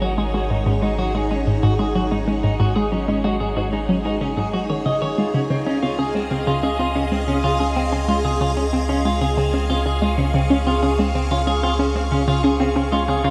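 Cosmic and luminous, this ambient space-music excerpt drifts along at 93 BPM in a straight 4/4, set in Db major and cut from a longer piece. A phased string machine holds swirling, vintage chords throughout, its bright sawtooth tone softened by ensemble chorus, phaser and shimmer reverb. Up front, a clean semi-hollow electric guitar picks arpeggios through tape echo and shimmer, while a hollow, bouncy square-wave pluck carries the riff beneath it, wrapped in chorus, phaser, tape echo and shimmer of its own. A filter sweep runs on the synth arpeggio sound across the whole passage. Underneath, a round, deep analog bass anchors the low end as the harmony moves from Ab7sus4 to Dbmaj7 at 5.2 seconds, all set in a vast, echoing space with an eight-second reverb tail.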